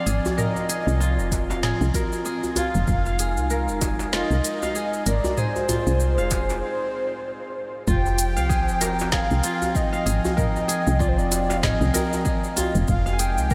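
Drenched in a vast, dreamy reverb, this excerpt of earthy, meditative organic downtempo in F minor moves at 96 BPM with a gentle swing, drifting between Fm7 and Ab/F. A breathy, flute-like synth lead with vibrato carries the melody through analog chorus and diffuse delay over a warbling, nostalgic tape-like pad that pumps with sidechain, while a ringing, fingerpicked kora plays arpeggios with vintage 12-bit sampler grit. Up front, a round, woody FM bass anchors the groove alongside an afro-pop kit with crisp hats and a woody snare and a cracking djembe in the background; a deep electronic kick joins at 1.3 seconds, and a brief break at 6.6 seconds leads into the second section at 7.9 seconds.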